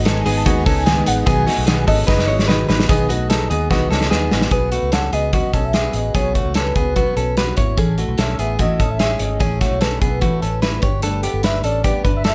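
A lightly reverberant mix with an up-front drum kit drives this bright, nostalgic slice of jangly indie pop, cut from a longer piece. A velvety, chorus-treated synth lead carries the melody with a smooth, mellow vibrato, over a fingerpicked steel-string acoustic guitar whose full-bodied tone and finger squeak sit in the background. A clean, compressed electric guitar recorded direct picks out arpeggios, while a dark, round, foam-muted fingered bass and a loose acoustic drum kit with a punchy kick, a medium-tuned snare and hi-hat fill out the low end and the beat, adding a pair of drum fills early on. A woody, slightly detuned upright piano with audible action noise sounds in the background until 4.5 seconds, and a very quiet, shimmering vintage string-machine violin part sustains chords only through the first 2.9 seconds. The harmony moves from G#m through B6 and Bsus2 before arriving on Gadd9 at 10.8 seconds.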